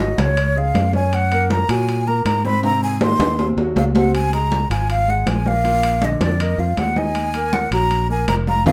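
A straight 4/4 pulse at 159 BPM drives this sophisticated Afro-Cuban jazz excerpt in Eb minor, cut from a longer piece. Congas and timbales join at 0.2 seconds: the high-tuned congas ring with a vintage, band-limited tone, while the metal-shelled timbales resonate in a live room, and a drum fill runs from 2.6 to 4.1 seconds. Up front, a breathy, mellow silver concert flute carries the melody, its crisp attack and slightly unsteady vibrato giving the line a human edge. A fingered electric bass sits just as forward, round and amped, and a baby grand piano fills out the harmony with a natural, short-sustained touch further back in the mix. The band plays live in one room with moderate studio ambience, moving through chords such as Gbadd9, Ab7, Dbmaj7 and Bb before reaching Ebmadd9.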